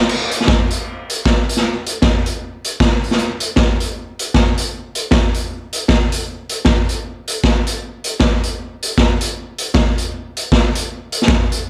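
Cheerful and upbeat, this brief ska fragment with a swung feel features a raw garage drum kit of crash cymbal, hi-hat, boomy kick and medium-tuned snare, sounding gritty and saturated with a rolled-off top, sitting up front in a small room with light reverb from 0.1 to 11.6 seconds.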